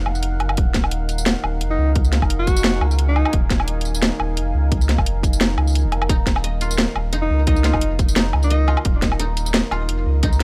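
A moody, detuned sawtooth pad with chorus and built-in reverb opens this tense, heavy excerpt of half-time drum and bass at 174 BPM in Eb minor over a single Ebmadd9 chord, alongside a thick, saturated sub bass up front, soon joined by an overdriven drum kit of cracking snare, bright hats, tambourine and woodblock plus a hard-clipped electronic kick, while a punchy, jazz-style alto saxophone with vibrato, 12-bit sampler grit and tape echo plays solo phrases from 1.7 seconds and a dry, woody fingerpicked koto adds arpeggios with tape echo from 6.1 seconds, the mix sitting in a gritty, hardware-recorded digital ambience.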